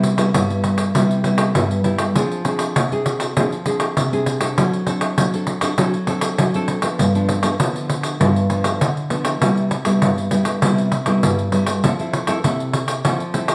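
A nylon-string guitar and a jingly pandeiro start together at once, both placed up front in this festive, playful samba and choro passage cut from a longer piece. The guitar carries the accompaniment with a fingerpicked, classical sound, and the occasional finger squeak gives it an intimate, human touch. The pandeiro has a vintage, band-limited character that sets its jingles apart from the warm guitar tone. The harmony moves from Cmaj7 through Fm6, D7/F# and G7 before settling back on Cmaj7 and opening onto Fmaj7 at 11.8 seconds. A large, wet studio reverb surrounds the pair, and both play steadily through to the cut at 13.5 seconds.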